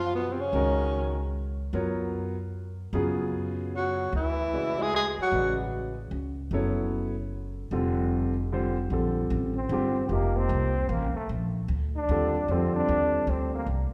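Swinging in 3/4 at 151 BPM, this searching, spiritual modal jazz fragment sets a woody, thumpy pizzicato upright bass and a deep-voiced concert grand piano under brief phrases from a breathy, whispered tenor saxophone and a bright, punchy trombone, before the harmony settles into Bb major at 8.9 s and the trombone takes a forceful solo from 9.6 s, bathed in the lush reverb of a recital hall.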